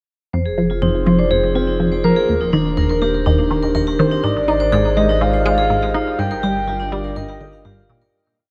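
Starting at 0.3 s, a bright, metallic hard-mallet vibraphone spins a 7-step arpeggio loop through delay while a juicy, squelchy sawtooth blip pluck cycles a phased, chorused 6-step riff, both drifting against the bar over a deep, round sine sub bass holding the roots of Fm7, Ebmaj7, Abmaj7 and Gm7, and at 0.8 s a mellow, wave-folded octave-layered lead enters with arched motifs and vibrato, making a hypnotic, expansive piece of sequencer-driven space music at 123 BPM in F dorian, steeped in a huge ambient reverb, that fades out from 5.5 s.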